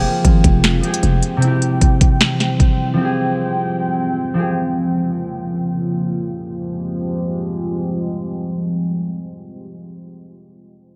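An overdriven trap drum kit hits hard at the front of this eerie hip hop excerpt, with a knocking kick, sharp snare, crisp hi-hats and finger snaps that sound re-recorded in a small room, playing until 2.7 seconds. The tempo is 153 BPM in 4/4 with a half-time feel, in F harmonic minor, tuned slightly flat to A4 = 437 Hz. A growling, buzzy 808-style bass opens underneath with a fast attack and decaying notes, stopping at 1.2 seconds. A thumb-plucked concert harp rings out close and acoustic through 4.6 seconds, while a deep, moody ambient pad of detuned sawtooth voices with a sub octave swells in slowly and sustains throughout, colored by chorus and its own reverb. The chords move through Fmadd9, C and B♭m over a long filter sweep, all set in a light digital ambience.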